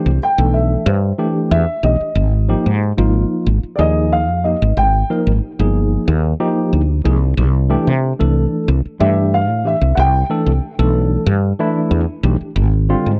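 Jazz at 92 BPM in a straight 4/4, this soaring, funky clip from a longer piece, tuned to A4 = 441 Hz, moves through Cmaj9, Abmaj7sus2, Cadd9 and Abmaj7. A dark, mellow, boxy concert grand carries the up-front melody with tape echo from 0.0 to 5.1 seconds and again at 9.0, while a worn, slightly out-of-tune tine electric piano comps cleanly through its built-in speakers and a woody, growly, round fretless bass holds the low end. The dusky production sits in a moderate large-studio reverb.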